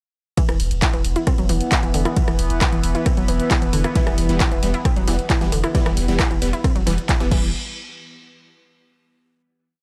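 Industrial and hypnotic, this short piece of driving peak-time techno runs at 134 BPM in E minor, launching straight into a drop on a single E minor chord at 0.4 seconds that holds until a final hit at 7.5 seconds. An electronic kick drum pounds four-on-the-floor, punchy and tape-toned, while an analog drum machine adds programmed closed and half-open hats, ride, rim clicks, claps and crashes, its hats and cymbals pumping against the kick. A saturated, thick sub bass with a low-pass filter and overdrive sits on a low E, rumbling between the kicks. A detuned, wave-folded unison pluck repeats a 16-step sequence through overdrive and tape echo, and an evolving analog drone with pulse-width modulation and chorus fades in slowly from 1.0 seconds. At 4.0 seconds a supersaw stab arrives with dotted-rhythm chords, one shape moved in parallel through a moving notch and tape echo. The sound is dry and gritty, with the drums re-recorded in a small room.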